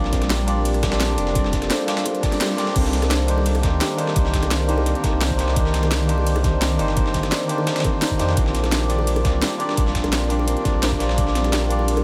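A barky, lightly overdriven tine electric piano, a shimmering ambient pad and a deep, round sub bass open this soulful, dreamy liquid drum and bass cut in C dorian at 171 BPM, with a gritty, sampler-style soul drum kit playing hats and snare beneath them. From 0.1 s, an overdriven drum and bass kit with a cracking snare, bright hats, rim clicks and crashes joins a knocking electronic kick, while very quiet, high-tuned bongos and a soft, harp-like synth pluck arpeggio sit in the background with chorus and delay. The up-front electric piano runs through a combo amp with overdrive and delay, and the ethereal pad drifts with a slow attack, octave-up shimmer, phaser and chorus. The harmony moves from Bb6 to Cm9 at 2.8 s and back to Bb6 at 8.4 s, with a band accent at 2.4 s just before the second drop. A huge ambient reverb soaks the mix in a hazy, floating space, and the passage is cut from a longer piece.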